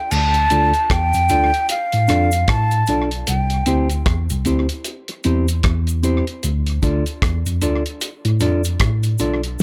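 A lightly reverberant, close-up mix opens this laid-back roots reggae excerpt, with an airy, hollow jazz flute carrying the melody through dub echo and plate reverb until it drops out at 4.0 seconds. A clean tine electric piano holds down the bass line, and a cloth-damped drum kit with a fat snare, tight kick and dark cymbals plays a swung groove through tape echo beside a faint cabasa in the background. From 0.5 seconds a dark, fingered electric guitar adds echoed accompaniment over a Dm to C and back to Dm progression.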